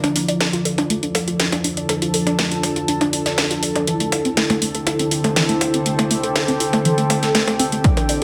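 Set in a moderately reverberant digital room with a faint mains hum, this dark, melancholic melodic techno excerpt at 121 BPM builds up over Dm and Am7/D as a dusty, warbling lo-fi pluck spins filter-swept arpeggios through chorus and delay above a deep, moody pad with 12-bit sampler grit and a nostalgic tape-like pad, while a smooth, expressive portamento lead with vibrato sits in the background, a techno kit with cracking snare and metallic, sidechain-pumped hats stays up front, and an overdriven, punchy kick and a barely audible riser arrive at 7.8 seconds.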